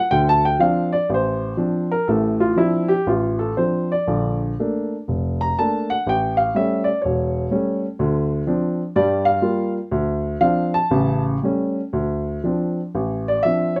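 A dark, mellow baby grand piano plays alone and up front through this moody, cool solo jazz excerpt, its swung, rubato phrasing moving from Dm7 through Bbmaj7 and A7 and returning to Dm7 at 8.0 seconds, then passing through Gm7, Dm7 and A7 before landing on Dm7 again at 11.9 seconds, all set in a light reverb.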